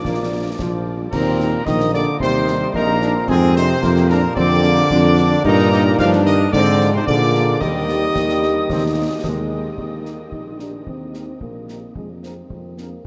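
In a straight 2/4 at 111 BPM, this proud, festive military-style march for wind band in Eb major sets a dark trumpet section on the melody over a mellow, up-front tuba bass, with a crisp, pure piccolo and a background euphonium on second lines, a very quiet French horn section accompanying, a clear, tight trombone section holding chords until about 9.7 seconds, and concert snare drum, bass drum and clash cymbals keeping time, all in a vast, echoing space in this short cut from a longer piece.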